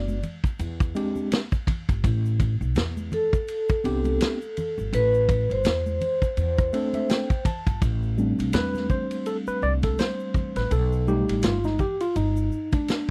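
A dry, close recording in a 1970s studio style, with little reverb, frames this cool, nocturnal jazz-hop cut from a longer piece, set in a swung 4/4 hip hop groove. Up front, a vintage acoustic drum kit plays kick, snare, hi-hat and ride, with a punchy kick, a medium-tuned snare, dark cymbals and a rolled-off top. Beside it, a pizzicato upright bass on steel strings sounds woody and warm. Congas and a tube shaker sit close but in the background. A metallic, ringing vibraphone with a slow motor vibrato carries the melody until 7.4 seconds, over a worn, slightly out-of-tune tine electric piano that is lightly overdriven through its built-in speakers. The piano plays a fill from 6.4 seconds and then takes a solo from 7.8 seconds to the end, over jazzy minor and altered chords.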